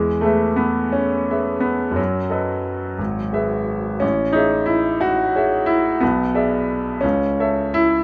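A bright, brilliant grand piano sits up front as the sole voice in this romantic classical character piece, its open tone and long sustain spanning from G#1 up to E5. The mood is brooding yet passionate, unfolding in 6/8 with free rubato as the harmony moves from E through B7/F# and Amaj7 to A/C#. Close, detailed miking and little reverb give this 8-second excerpt an intimate, present sound.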